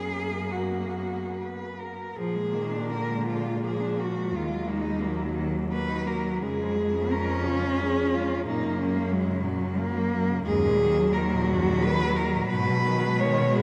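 A lyrical, warm classical excerpt for cello ensemble in a rubato 3/4, with a rich, distant cello singing the melody up front, a clear cello tracing a second line in the background, an expressive cello accompaniment with soft attacks and portamento, and a focused, close cello bass, all bowed with vibrato and bathed in the long echo of a vast cathedral.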